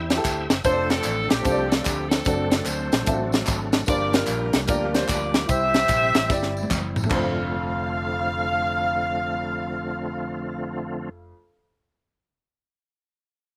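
A dry recording carries this soulful, reverent uptempo gospel excerpt in F major at 149 BPM, swinging in 4/4 as a sax section with vibrato leads the melody up front, touched by slapback echo. A reedy, bright tonewheel organ holds sustained chords through a slow rotary speaker and chorus vibrato, while a woody upright piano comps with its own slapback, and a dark, round fingered electric bass anchors the low end. A crisp, punchy fusion kit with dark cymbals and a high-tuned snare drives the groove alongside distant tambourine and group handclaps, until a drum fill at 6.3 seconds closes out the drums and percussion near 7.2 seconds, leaving the remaining parts to carry the final section.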